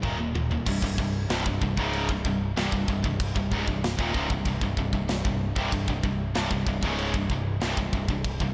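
Aggressive, heavy metal in a straight 4/4, cut from a longer piece, opens on a drum fill from an up-front, polished kit with bright china and crash cymbals, a medium-tuned snare, tight kick and toms, over low riffs from two picked, distorted guitars and a growling, overdriven picked bass, before a double-tracked high-gain guitar with slapback echo joins the riff at 0.7 seconds in a small room with light reverb.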